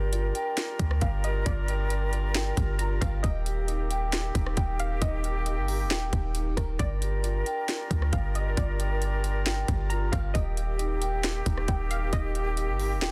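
Melancholic and spacious, this atmospheric cloud-rap excerpt sets a trap kit with hard-clipped kick, sharp snare and metallic hats over a deep, boomy 808-style bass, while a distant woodwind section pumps through sustained chords, a slightly broken-up electric guitar traces dark arpeggios through phaser and delay, and a warbling, lo-fi pluck carries the melody in the background, all cycling between Gm7 and Eb6 in a dense, heavily limited mix.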